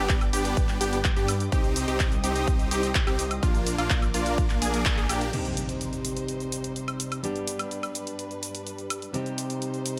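Anthemic and emotional, this excerpt of festival progressive house moves at 126 BPM in a straight 4/4 in C minor, opening in the thick of a drop over chords of G, C minor and B-flat. A huge, bright supersaw riff rides beside a lush, punchy unison pluck playing arpeggios, with a thick, saturated detuned saw bass underneath, all three pumping with sidechain and the riff and pluck trailed by delay. A punchy, up-front electronic kick and a layered big-room kit of handclaps, hi-hat, crash, cabasa and woodblock drive the groove, with a band accent at 4.9 seconds. At 5.3 seconds the synths and bass drop away, an electronic impact hits, and a woody, full-bodied fingerpicked steel-string acoustic guitar with old strings steps forward, also pumping and echoed by delay. Throughout, a smooth, bowed studio string section holds sustained chords in the background, its vibrato adding sheen beneath light digital reverb.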